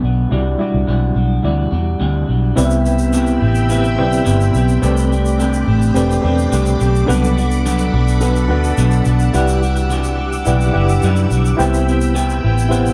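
A straight 4/4 pulse at 106 BPM carries this hazy, dreamy bedroom-pop fragment, cut from a longer piece. From the start, a foam-muted, round and punchy electric bass sits up front, while an electric guitar through a small old amp adds a slightly broken-up, picked part coated in lush chorus and a warbly pitch drift. Beside it, a reedy, worn electric piano sounds slightly out of tune, its fast tremolo heard through built-in speakers and a cassette-tape haze. At 2.6 seconds a string machine enters with mellow, slow-attack sustained chords thickened by ensemble chorus, and a grainy, bright egg shaker joins low in the mix. The harmony drifts from Em9 through Cmaj7, Am11, Bm7 and Em9/C before settling back on Cmaj7, all inside a dark, warm production with light reverb.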